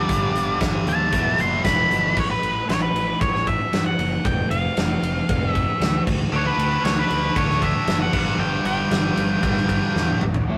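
Restless and anthemic, this quiet-loud alternative rock passage drives at 116 BPM in a straight 4/4, cut from a longer piece and captured in a rough rehearsal room with light reverb. A dark, fuzzed octave lead guitar carries the melody throughout, opening with a solo over G and Esus2 in the first 2.2 seconds. Beneath it, a bright, high-gain rhythm guitar sits up front with its distorted riff, dropping out at 2.2 seconds and crashing back in at 6.3 seconds as the harmony moves from a rootless F#madd11 through a chordless stretch to D5 and G5. A warm, hollow-bodied semi-hollow guitar adds a tremolo-treated riff in the background during the opening, reappearing briefly at 10.5 seconds, while a growly, overdriven fingered bass with fuzz anchors the low end. The big acoustic drum kit, dark and smooth with a fat snare and punchy kick, stays up front and closes with a fill from 10.0 seconds.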